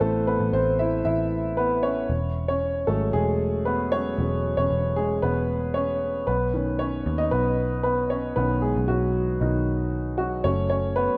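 A clear, natural concert grand piano with deep low notes and a dark, round, foam-muted vintage electric bass open together at 0.0 seconds in this uplifting, warm piano-driven pop excerpt in E major at 115 BPM, with the piano taking a solo through 10.5 seconds over chords moving from Am to E6, Badd9 and F#m, both parts sitting up front in a moderate plate reverb.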